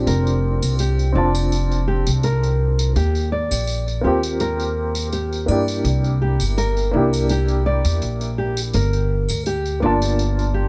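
A smoky, dark trip hop excerpt with a light swing opens on a dim, mellow, slightly detuned upright piano, its action noise audible through tremolo, tape echo and a filter sweep, over a growly, woody pizzicato upright bass up front, as a thumb-plucked classical nylon-string guitar adds echoing arpeggios and a quiet tambourine and triangle keep time in a small, lightly reverberant room through chords moving from Bbmaj7/F to Eb6, C7 and Gm7.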